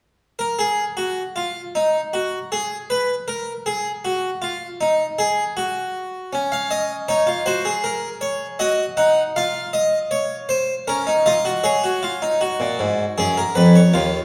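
A solo harpsichord, airy, plucked and full in the French style with two sets of strings, sits up front from 0.4 s in this serious, solemn baroque-style four-part fugue at 79 BPM in 4/4 with a straight feel, ranging from Eb2 to Gb5 and opening unharmonized before the harmony moves at 6.3 s through Dbmaj9, Ebmadd11, F5 and Bbm/Db to Gbmaj9, all carried by a wet recital hall reverb in a fragment cut from a longer piece.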